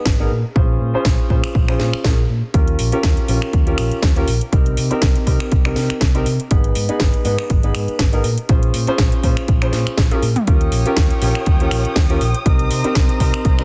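A boxy concert grand piano opens this feel-good, groovy nu-disco excerpt with a low-passed, pumping accompaniment trailed by delay. Almost at once a punchy electronic kick, a house kit of cracking snare, metallic hats, finger snaps and toms, and a saturated, envelope-filtered picked bass settle into a swung groove over chords moving from Bbm9 through Eb7, Cm7 and Abm. After a drum fill at 10.0 seconds, a veiled, muted violin section enters at 10.5 seconds with distant, pumping sustained chords, all in a dry, dense and heavily limited mix.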